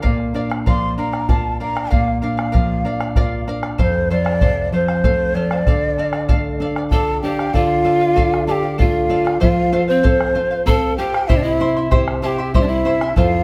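A straight 3/4 pulse at 96 BPM anchors this festive, earthy Andean folk excerpt in D minor, with a deep, dark bombo beneath fingerpicked accompaniment from a full-bodied nylon-string guitar placed up front and a bright, shimmering charango with double strings. A breathy, hollow large quena carries the melody from 0.7 s, joined at 6.9 s by an airy bamboo pan flute with crisp chiff and vibrato on a second line, as the harmony moves through Bb, F, Dm and C. Close, detailed microphones capture the ensemble in a wet recital hall reverb.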